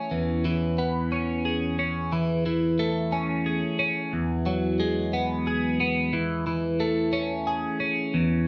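A bright, clean twelve-string electric guitar rings up front through a wet large-studio reverb, its compressed, picked tone shimmering with phaser as it takes the solo for the full 8.5 seconds of this rock excerpt. At 60 BPM in a straight 6/8, the guitar builds with a soaring, euphoric mood over chords moving from C#m7/E to Amaj7/E, Eadd9 and back to Amaj7/E. The sound captures a band playing live in one room, and the passage is cut from a longer piece.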